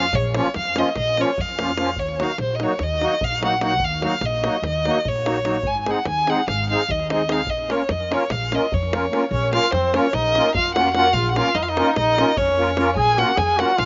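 Virtuosic and fiery, this Balkan wedding-band excerpt in 9/8 sets a rich, focused bowed violin melody with vibrato up front over a reedy, shimmering musette accordion with slapback echo, a woody pizzicato upright bass on gut strings and a deep, dry davul, until a dark, distant trumpet enters at 9.3 s with a soft-attacked second line, the outdoor recording carrying a light reverb.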